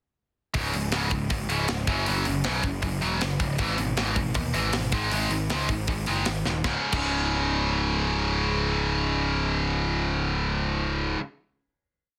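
A tight, bright distorted guitar hammers out palm-muted eighth notes in C# minor at 158 BPM alongside a tight metal kit with a rolled-off top and a growly, fuzz-overdriven picked bass, driving an angry, aggressive punk rock verse through C#5, F#5, E/G# and G#5 until a drum fill at 6.5 seconds lands the band on a final C#5 chord that the guitar holds to 11.2 seconds, all in a dry, dense, heavily limited mix.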